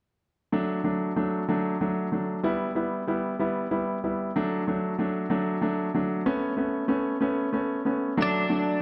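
A clear concert grand piano carries this heartfelt, tender pop excerpt in D major, its deep-bassed, polished chords sitting up front with short sustain as they move from D through Em and back to D, then to Aadd9. The slow 6/8 pulse at 63 BPM feels straight and unhurried. At 8.2 seconds a bright, twangy twelve-string electric guitar enters up front with a clean, picked melody note, while a wet scoring-stage reverb gives the dark production its spacious glow.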